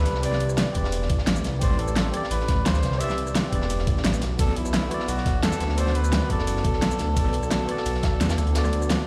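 Played on a big sound system in a bare room and bathed in a large studio reverb with light studio ambience, this short cut from a longer liquid drum and bass piece feels soulful and dreamy at 173 BPM in A dorian. A flugelhorn carries the melody in a vintage jazz style, its soft-attack, scooped notes colored by tape echo, while a worn, slightly out-of-tune tine electric piano accompanies it through digital delay. The dark detuned saw bass sits up front, deep and rumbling with a beating, sustained tone. Two drum kits layer from 0.1 seconds: a pop kit with a fat snare, hi-hat, ride, rim click and shaker, overdriven and re-recorded in a small room, and a gritty, saturated breakbeat kit with high-pass filtering and a rolled-off top. An overdriven, knocking electronic kick enters at 0.8 seconds, and the harmony moves from Am11 to Bm7 at 4.2 seconds.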